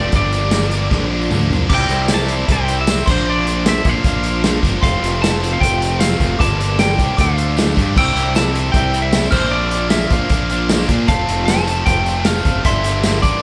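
Over a straight 4/4 pulse at 153 BPM, this wistful, jangly indie rock excerpt in C mixolydian opens with a twangy, slightly broken-up lead guitar solo and a drum fill from 0.9 seconds on an up-front acoustic kit with a tight kick, then at 1.7 seconds a bell-like glockenspiel joins in the background, while a double-tracked high-gain distorted guitar riff, a fuzzy overdriven fingered bass, a very quiet jingly tambourine and a mellow, detuned analog pad fill out the sound of a band playing live in a large studio room.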